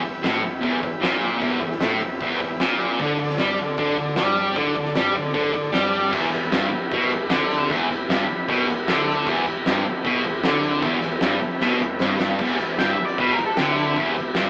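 Heard through an AM-radio sound of a band playing live in one room, this raw, menacing garage rock excerpt at 153 BPM in E minor is driven by a bright, double-tracked fuzz guitar riff and a saturated, oversized low-tuned drum kit with boomy kick and fat snare, both up front; a buzzy combo organ with heavy vibrato holds sustained chords in the background and adds a fill at 8.1 seconds, a round hollow-body bass sits underneath, and a jingly, very quiet tambourine joins in; a drum fill arrives at 11.6 seconds, and a dark octave-fuzz lead guitar takes a brief solo from 12.8 seconds.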